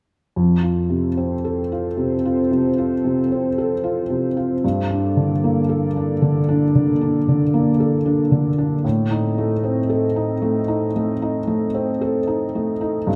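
Longing and fragile, this short cut from a longer neoclassical piece for piano and strings drifts in a slow, rubato 4/4. A felt-muted upright piano carries the accompaniment from 0.4 seconds, its soft, intimate tone sitting up front with a thin, vintage mellowness. At 1.0 seconds a warbly, tape-like pad joins it, holding sustained chords with a nostalgic, lo-fi character, detuned and dark, its slow attack and long release softened further by chorus and its own reverb. The harmony moves from F through Gmadd9 to Adim. A wet recital hall reverb surrounds the whole, lending a lingering, roomy glow until both parts end at 13.2 seconds.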